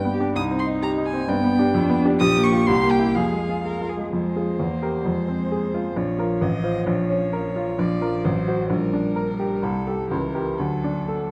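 A quick, straight 2/4 pulse at 130 BPM drives this restless, urgent classical-period movement for piano trio, cut from a longer piece and tuned to A4 = 439 Hz. The baby grand piano sits up front as the accompaniment, its bright, brilliant tone and short sustain spanning the low bass up to C5. A single bowed violin carries the melody with a rich, smooth and even sound and vibrato, reaching as high as Eb6. From 0.1 s a single bowed cello adds a focused, clear second line with vibrato. The harmony starts in F minor, moves into a new section at 4.1 s, and turns to G minor at 7.8 s, pressing through a C#dim7 chord before landing on D. A moderate recital hall reverb and a dark, warm production give the trio a sense of space.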